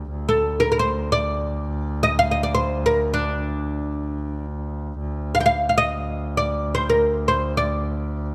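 A bowed double bass opens at 0.0 s with a bright, earthy drone on D2 carrying an airy bow sound, and at 0.3 s a woody, fretless oud with plectrum-plucked double strings joins up front, spinning a melancholic, longing melody between D4 and G5 in free time over D maqam kurd, all set in a dark production with light reverb in this fragment cut from a longer Arabic maqam ensemble piece.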